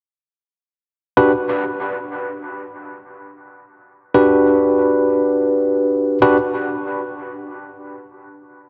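Glitch hop in free time and E minor, playful and gritty in mood, cut from a longer piece. A bright, clean tine electric piano sits up front, playing stabs between 1.2 and 6.4 seconds in the range D4 to B4, heard as if through built-in speakers, shaded by a low-pass filter and dub echo over a rootless Em7. A wet plate reverb with a 3.5-second tail fills the space, and the master is dense and heavily limited in a modern style.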